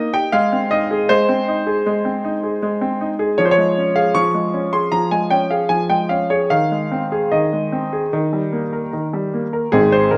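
Captured close and in fine detail, a clear, slightly worn grand piano sits present and up front within a moderate recital-hall reverb. This graceful, cheerful classical-period sonatina in Ab major moves at 77 BPM in 4/4, its beats stretched and eased with rubato as the solo piano ranges from deep bass to bright upper notes. In this brief cut from a longer piece, the harmony passes from Ab through Db and Ab again before arriving on Eb at 8.1 seconds.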